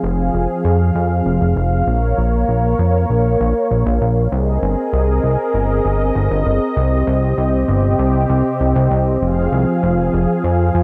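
Synthwave with a driving, moody feel, this short cut from a longer piece pairs a smooth, detuned sawtooth pad holding sustained chords with a fat, thick analog bass whose filter pluck and fast attack give it punch, both sitting up front for the full 10.8 seconds. The pad carries a chorus shimmer over a progression that moves from Fm through Bbm, Abadd9 and Cm before returning to Fm. A lush hall reverb and bright 1980s-style digital production wrap the whole sound.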